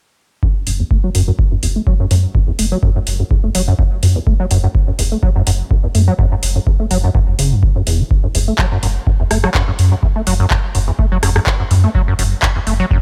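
This excerpt opens at 0.4 seconds with a deep acid bass riff and an electronic kick drum arriving together, an acid house groove at 125 BPM in 4/4 with a light swing on the sixteenths and a hypnotic, trippy mood in F# minor. The acid bass is rubbery and resonant, a dark square-wave line with a fast attack that decays, sitting up front with a subtle chorus while a filter sweep runs through it. The kick is deep and tape-warm, re-recorded in a large room and placed up front. At 0.7 seconds a round analog bass joins low in the register, a detuned blend of sawtooth, sine and triangle waves with sustained notes, tube saturation and sidechain pumping, and it carries its own filter sweep. Alongside it comes a booming analog drum machine with handclaps, metallic hi-hats and rim clicks, set further back in the mix under a digital ambience.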